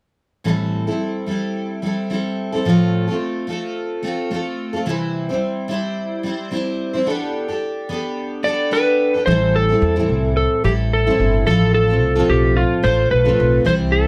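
Easy-going and sunny, this short acoustic pop passage, cut from a longer piece, opens with a full-bodied, double-tracked picked steel-string acoustic guitar playing through Am7, F/A, C and Gadd9/B with a light swing. At 8.4 seconds a dark, slightly broken-up electric slide guitar, played with fingerpicks, enters with the melody, and at 9.3 seconds a woody, thumpy pizzicato upright bass with gut strings joins as the second section begins. The parts sit up front in a wet studio reverb.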